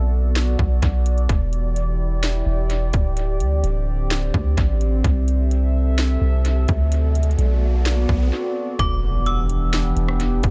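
A long, deep 808-style bass stands out at the front of this atmospheric cloud-rap excerpt, its sine tone striking fast and then decaying beneath a warbling, nostalgic pad that sustains detuned chords through chorus, phaser, built-in reverb and sidechain pumping. The hip hop groove sits at 128 BPM in 4/4 with a half-time feel in E minor, drifting through Bm7, Em7, D7sus4 and C6 in an ethereal, spacious mood. A trap kit enters at 0.4 seconds with a hard-clipped kick, sharp snare, metallic hats and rim clicks, placed up front and trailed by tape echo. A riser builds quietly in the background from 6.6 seconds, the drums break briefly, and an impact lands at 8.8 seconds as the harmony returns to Em7. There, a bright, inharmonic FM bell rings out a short high melody until 9.7 seconds, filtered and chorused with its own tape echo, over a digital, echo-heavy mix.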